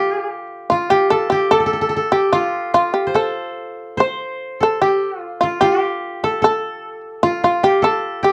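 A buzzing, percussive shamisen carries the melody from the very start, with a softer, woody koto picked with fingerpicks tracing a second line in the same register, in this austere, calm fragment of Japanese traditional chamber music that moves freely around 74 BPM in 2/4, set in a dark production with moderate studio reverb.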